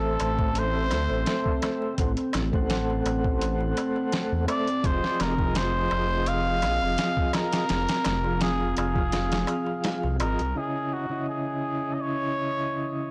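Trip hop at 84 BPM with a slight swing, melancholic and dark, this short passage features a veiled cup-muted trumpet melody with 12-bit sampler grit and tape echo over a mellow, flute-like tonewheel organ turning through a slow rotary speaker with tremolo, while a moody analog pad with chorus sits in the background. A rumbling detuned saw bass with tube saturation and a thumpy, pitched-down boom bap kit carrying small room ambience drive the groove alongside a crisp metal-shell darbuka until all three drop out at 10.5 seconds. Chords move from Am to Fm7 at 4.8 seconds and then C#madd9, leaving trumpet, organ and pad in a blown-out, overdriven mix with light reverb.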